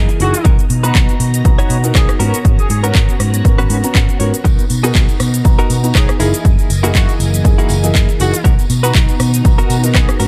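The mix is dry and close, with little room sound, and most parts pump against the kick in classic filtered disco house fashion, in a sunny, joyful mood with a swung 4/4 groove. An analog electronic kick sits up front with a punchy, tape-warm thump, while an overdriven house kit of handclaps, metallic hi-hats, rim clicks and shaker fills in the pulse, and a distant tambourine joins at 4.5 seconds. A fingered electric bass, amped and tube-saturated, anchors the low end as a boxy grand piano with phaser and a lush, chorused sawtooth string machine hold the Bmaj7, G#m11 and F#13 harmony beneath. A clean, picked electric guitar, recorded direct with tremolo, carries a compressed riff and slips in a short fill around 3.7 seconds. Over the top, a tight horn section with light vibrato plays a short melodic figure coloured by 12-bit sampler grit and digital delay, dropping out before returning at 5.9 seconds. 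The passage is cut from a longer piece.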